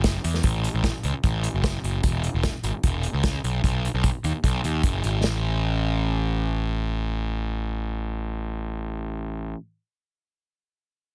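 The sound is dry, dense and heavily limited, with both parts placed up front in this short indie rock clip cut from a longer piece. The mood is wistful yet carefree, set over a straight, brisk four-beat pulse. A fuzz-drenched picked electric bass carries the low end between E1 and E2, its overdriven tone heard direct and through an amp with a warm, gritty edge. An acoustic drum kit, played with bundle sticks in a small room, supplies hi-hat, a punchy kick and a medium-tuned snare whose soft clipping adds bite. The drums drop out at 5.3 s, just as the music moves into a new section, and the bass carries on alone until 9.5 s.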